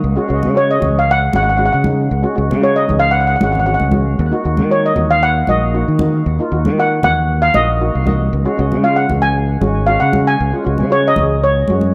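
A growly, overdriven electric bass opens this festive, bouncy calypso fragment at 116 BPM, sitting up front with a bright, amped edge that anchors the low end. Moments later a double-seconds steel pan enters in accompaniment, its soft rubber-stick tone boxy and mellow, followed by congas tucked in the background with thin, medium-tuned skins played with soft hands. By 0.6 seconds the lead pan arrives with the melody, shimmering and mid-forward, carried by an analog delay that gives its high notes a trailing echo. The harmony moves from C#sus4 to D#m and back to C#sus4 over the roughly 12 seconds heard, in a straight 4/4 feel. A light reverb and small room ambience hold the parts close together, giving the whole a cheerful, intimate island lilt.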